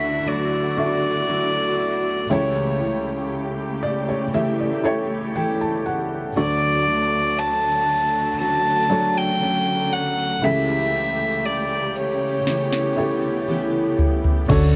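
A hopeful, emotional pop ballad at a slow 59 BPM, this excerpt sets a pure, floating solo violin melody over a felt-muted upright piano with audible action noise, a lush, distant string section holding sustained chords, and a full-bodied fingerpicked steel-string acoustic guitar playing arpeggios through digital delay, all moving between Dmaj7 and A7/C# in a small room ambience. The piano adds a fill from 3.3 to 6.4 seconds. At 12.5 seconds a smooth R&B drum kit with a soft kick, sharp snare and metallic hats enters with a fill, and a dark, round, foam-muted electric bass sounds D2 at 14.5 seconds, just as the section closes.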